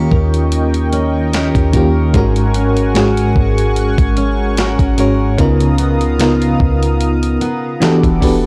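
A mellow FM electric piano with tremolo sits up front in this moody, late-night contemporary R&B excerpt at 74 BPM, its chords moving from Eb7 through Ab9sus4 and Db13 to Em11 over a lightly swung 16th-note feel. A gritty, compressed sampler-style drum kit with a thumpy kick and medium-tuned snare plays alongside a deep, boomy 808-style bass, while a picked dreadnought acoustic guitar adds arpeggios with audible finger squeak. A shimmering, chorused pulse-width pad pumps softly behind them, and a very quiet, glassy wavetable pluck glints on Bb4 only until 1.4 s, all within a dry, saturated hardware sound touched by digital ambience.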